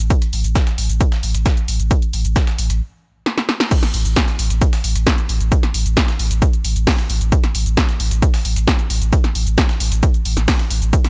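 A thick, saturated sub bass pumps up front on A1 beside a punchy, layered electronic kick and a tape-warm analog drum machine with crash, hi-hat, shaker and snare, while a gritty sampler-style kit sits in the background of this intense, hypnotic peak-time techno cut from a longer piece at 133 BPM in a digital ambience, with a stop at 2.8 seconds and a drum fill and band accent leading into the drop at 3.7 seconds.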